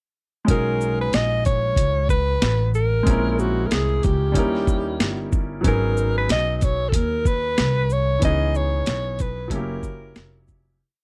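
A swung 93 BPM boom bap beat of gritty, pitched-down sampler-style drums, with a thumpy kick, high-tuned snare, quarter-note hi-hats and shaker, carries this smooth, relaxed jazz-hop piece in B major, where a woody pizzicato upright bass walks with slides and chromatic approach notes, a clear vintage grand piano holds rootless chords with grace notes, and a forceful alto saxophone with vibrato plays a free, jazz-style solo up front over chords moving from Bmaj13 to F#7b9, all in a dry, close 1970s-style studio sound until the fade-out from 8.2 s.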